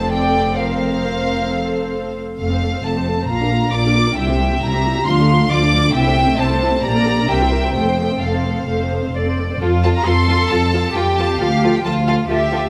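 A wet recital-hall reverb surrounds this cheerful, lively 12.7-second cut from a quick classical-period movement for string orchestra, moving at 134 BPM in 4/4 with a straight feel in F major. Up front, a dark violin section carries the melody high in its range with light vibrato and a soft sul tasto attack. A pure, floating second violin line, an intimate viola accompaniment and a warm cello part sit beneath, all anchored by a close, up-front double bass section. The harmony moves from F through Bb, C and D minor to a C7 that resolves to F near 7.8 seconds, and a fresh section begins at 9.6 seconds.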